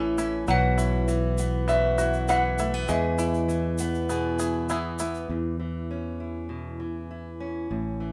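Hopeful and pastoral, this short acoustic folk passage moves at a straight 100 BPM in 4/4, set in E major and tuned slightly sharp to A4 = 444 Hz. A fingerpicked steel-string acoustic guitar sits up front with fresh, concert-grade brightness and audible finger squeak, carrying the accompaniment from start to finish alongside a warm, direct, amped electric bass played with the fingers. A twangy, percussive bluegrass banjo adds fingerpicked arpeggios until about 5.4 seconds, while a grainy, compressed tube shaker ticks quietly underneath. From 0.5 seconds a lap resonator guitar, played with slide and fingerpicks, takes the melody high in its range with a nasal, metallic edge, joined by a hard-mallet vibraphone ringing on a single note as a second line, its motor off. The harmony moves from Bsus4 to E, then settles on a bare E5 as the music shifts into a new section at 5.3 seconds, leaving the guitar and bass beneath light reverb.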